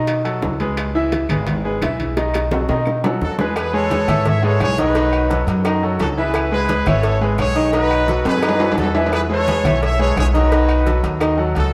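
Heard from further back in a room washed by a long plate reverb, this joyful, sunny salsa, cut from a longer piece, moves in a straight 4/4. A brilliant grand piano up front carries the accompaniment from the first moment, joined by a growly pizzicato upright bass with steel strings, and both play through the whole clip. Behind them sits a busy percussion bed: tight, high-tuned bongos and cowbell, soft-handed congas, saturated and compressed timbales and agogo bells with a metal-shell ring, and very quiet, dry claves. A drum fill begins at 2.2 seconds, and a punchy trumpet section enters during it at 3.2 seconds, carrying the melody up front with light vibrato and a slapback echo. The harmony moves between B7 and C#m7 before an E6 arrives at 9.1 seconds, then settles back on B7.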